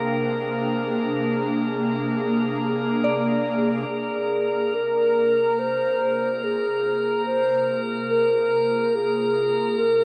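Unfolding in free time, this melancholic, serene ambient excerpt drifts through a huge, wet reverb and the warbling pitch drift of worn cassette tape. An airy, breathy pad sits up front holding sustained chords with a slow attack and long release, its chorus adding a detuned shimmer, while a glassy texture of drifting overtones hovers above it throughout. In the background, a soft, pure FM synth bell plays gentle arpeggios with chorus, phaser and tape echo until about 4.3 seconds. At 3.9 seconds a mellow, hollow alto flute enters up front with a straight tone and crisp attack, carrying a melody that still sounds distant in the vast space. The harmony moves from a Bb9 chord to Ab69 as the flute arrives, and the tuning sits slightly low at A4 = 438 Hz.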